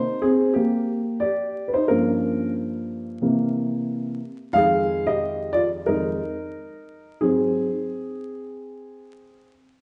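A swung sixteenth-note lilt in 4/4 carries this cool, smoky hip hop fragment, cut from a longer piece, where a dark, woody, boxy upright piano sits up front and plays alone from 0.0 to 9.5 seconds, moving through Cm7, Gm7b5, C7, Fm9 and Ab7 inside a large, wet studio reverb with vinyl crackle and a dulled, rolled-off top end.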